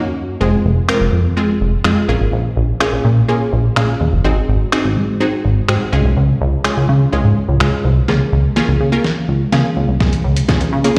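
A lush, detuned unison pluck opens this energetic, bittersweet dance-pop excerpt at 125 BPM, its bright, wave-folded tone carrying plate reverb, slapback echo and sidechain pumping. A punchy, funky analog bass joins at 0.4 seconds under the Fm, Bbm7, Ab7 and Db changes, and a gritty, pitched-down trip hop sampler-style kit with a thumpy kick, medium-tuned snare, hi-hat and finger snaps arrives at 0.9 seconds. From 8.1 seconds a drum fill drives a build-up over Db6, all heard as a live gig through the venue's PA in a recital hall's reverb.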